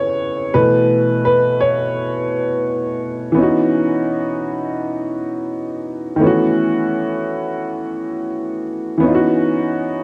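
Hip hop with a melancholic, nostalgic mood, this short cut from a longer piece features a solo upright piano throughout its 10 seconds. The piano sits up front with a woody, smooth, vintage tone and long sustain, colored by cassette tape and analog delay. Its harmony moves from C#m7 to B9sus4, then settles into a recurring pull between C#m11 and B9sus4, with a new passage beginning at 3.4 seconds. A gentle swing on the sixteenths gives the four-beat pulse a relaxed, laid-back feel. The whole recording carries a worn, warbling old-tape character with warbly pitch drift, set in a wet studio ambience that adds a hazy, faded-memory quality.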